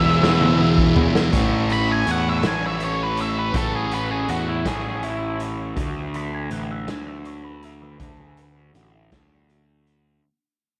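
A hazy, kaleidoscopic slice of psychedelic rock cut from a longer piece, recorded in a small room with light reverb and a gritty, saturated drum kit whose top end is rolled off, while a round, overdriven fuzz bass sits up front. At a slow 54 BPM in a straight 6/8, a double-tracked thick fuzz guitar riff runs through a phaser beside a buzzy, overdriven combo organ holding sustained chords in the background with spring reverb until 5.7 seconds, as the drums open with a fill. An octave-fuzz lead guitar with slapback echo plays a melody from the start, and from 1.3 seconds it takes a solo over a filter sweep and fade-out, the harmony moving from E to A and then D5.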